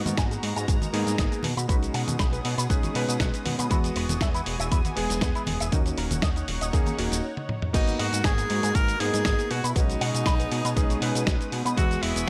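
This nu-disco excerpt opens on a warm electric grand piano carrying the chords with a clangy, vintage edge, roughened by 12-bit sampler grit and analog delay, while a lush detuned pad with chorus and phaser pumps softly in the background and a fat, nasal analog bass holds the low end. Within the first moments a gritty, compressed sampler-style soul kit of snare, hi-hat, cabasa, toms and crash comes in, along with saturated congas played with soft hands far back in the mix until 7.0 seconds, and a punchy, tape-touched electronic kick soon follows, sitting up front at 119 BPM in a straight 4/4. A dark, clean electric guitar through an envelope filter and analog chorus picks out a riff in the background, adding to a sensual, cosmic mood in G# minor over chords moving from G#m9 through B6 and Emaj7 to D#m7. After a short break and drum fill, the drop arrives at 7.7 seconds, where a clear, close-miked tenor saxophone enters with vibrato and a punchy pop-style solo line. 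The sound is dry and close, with little reverb, and the passage is cut from a longer piece.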